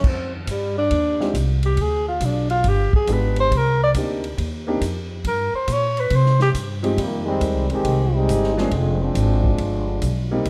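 Big band swing with a brassy, dramatic mood, this short cut opens on a breathy tenor saxophone solo with scooped notes over woody, growly pizzicato upright bass and an acoustic drum kit with a punchy kick, joined by baby grand piano accompaniment from 1.2 seconds, before a clear trombone section takes the lead at 7.0 seconds, set in a dark production with light reverb.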